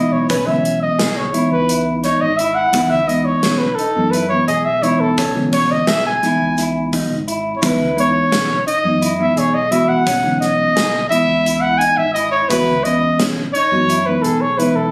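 A dark, up-front trumpet opens this driving, intricate progressive instrumental, soloing in a jazz style with light vibrato, scooped notes and plate reverb over a bell-like tine electric piano, mellow arpeggios from a clean electric guitar, and a round, amped fingered bass, all on a C#m7 chord in C# minor. At 0.3 s a gated 80s drum kit, with a punchy kick and medium-tuned snare in a bright stone room, enters with a grainy, very quiet egg shaker, pushing the 7/8 groove at 172 BPM (eighths). The sound has the club reverb and roominess of a phone recording, and it is cut from a longer piece.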